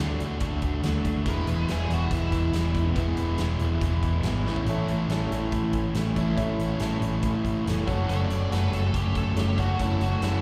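A round, dark electric bass sits up front in this confident, swaggering classic rock excerpt at 141 BPM in E mixolydian, anchoring riffs from a bright, compressed distorted guitar and a dark, sludgy overdriven one, both with slapback echo, while a big-room rock kit with a tight kick and medium-tuned snare drives the straight 4/4 feel and throws in a fill at 4.5 seconds. A bluesy overdriven lead guitar with plate reverb adds a second line in two short bursts, returning at 8.1 seconds, and a woody upright piano with long sustain joins in the background at 4.7 seconds, with a very quiet, full-bodied jumbo acoustic guitar picking underneath. The chords move from D to E, A and F#m, and the whole thing sounds like a live gig heard through a venue's PA with light recital-hall reverb.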